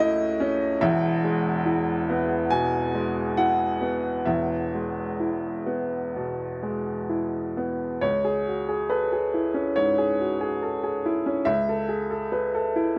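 Intimate and hopeful, this short neoclassical minimalist piano piece unfolds in E major at a gently rubato pace of roughly 63-74 BPM in 4/4, tuned slightly high to A4 = 444 Hz. A single upright piano carries everything alone, its tone clear, woody and smooth with a vintage character and long sustain, placed up front in the sound. It spans a broad register from a deep E1 up to G#5, opening on an A/C# chord before settling onto E. Around 8.0 seconds the music moves into a new passage that turns to C#m, then returns to A/C# at 11.5 seconds. A moderate studio ambience with a short half-second decay frames the instrument closely, keeping the feel personal. Cut from a longer piece, the fragment ends at 13.0 seconds.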